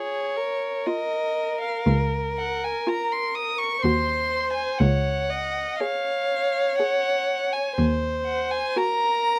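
Two muted violins, the first singing the melody up front with soft attacks and vibrato over the second's supporting line, and a veiled viola accompaniment with portamento open this elegiac, solemn excerpt from a slow romantic string quartet movement at 60 BPM in a rubato 3/4. From 1.9 to 8.6 s they are joined by a dark, close muted cello bass with light vibrato and its own sliding portamento, as the harmony moves from B-flat minor to D-flat major and a diminished chord over E-flat under light reverb and detailed close miking.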